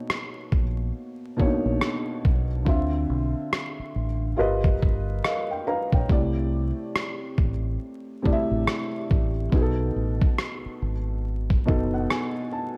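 A lazy 70 BPM groove in 4/4 with a 62% swing on the sixteenths sets this nostalgic, cosy lo-fi hip hop piece, cut from a longer track, into its unhurried sway. The dusty sampler-style drum kit, present from 0.1 s, offers a thumpy, gritty kick and a rim click, compressed and tape-warm, with the air of a large room around it while still sitting up front. A deep dub fingered electric bass joins at 0.5 s, dark, round and punchy, moving low between F#1 and D2. A felt-muted upright piano carries the harmony through Bmaj9, Dm9, G7alt, C69 and B7, its soft, boxy, intimate tone coloured by cassette tape and the audible clatter of its action, with short piano fills at 4.8 s and 11.2 s. Vinyl crackle, light reverb and a digital ambience wrap the whole break in a faded, homely haze.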